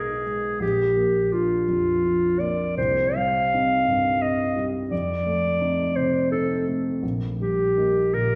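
Tender and warm, this romantic classical duo for clarinet and grand piano moves at 84 BPM in 3/4, with uneven, rubato beats in E-flat major. The clear, smooth-topped clarinet carries the melody up front, over a dark, mellow grand piano accompaniment with a vintage tone and long sustain. The pair sits in a wet recital hall, heard from further back in the room, in an 8.4-second passage cut from a longer piece, with chords moving from A-flat minor through B-flat, C minor and F7 to settle on E-flat.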